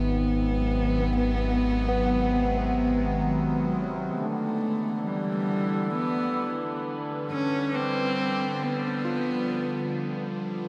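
A slow, straight 4/4 pulse at 68 BPM carries this serene, reflective ambient fragment, cut from a longer piece and bathed in a huge, wet reverb with a 7.9-second tail that gives the whole mix a dark, warm production. Up front, a dark, intimate solo cello sings the melody between Gb3 and Db4 with light vibrato, a soft attack and an airy sul tasto bow, its line trailed by delay. Beside it, an evolving wavetable pad holds sustained chords with a slow attack and long release, its bright, morphing sine tones colored by phaser and its own reverb, while a filter sweep moves through it over the first 4.2 seconds. In the background, a barky tine electric piano plays lightly overdriven arpeggios through a combo amp with delay, and a reedy, nasal hand-pumped harmonium breathes a low drone in a boxy small room. A round, deep analog bass sits up front on Ab1 under the opening Abm7 and stops at 4.1 seconds, just before the harmony shifts to Em7 and then to G7 at 7.7 seconds.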